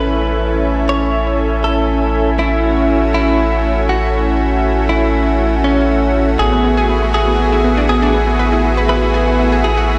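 Hopeful and expansive, this house excerpt at 120 BPM in A major pairs a clean, compressed direct-recorded electric guitar melody with delay, a lush chorused unison pad, mellow detuned supersaw stabs through a low-pass filter, a deep, up-front analog bass, a very quiet electronic downlifter in the first 2.4 seconds and a faint, glassy drifting-harmonics texture, before a warbling, vintage cassette-tinged analog pluck arpeggio slips in at 6.4 seconds as the harmony moves to Eadd9/A, all set in a lush hall reverb and heard as if played through a big sound system in a bare stone room.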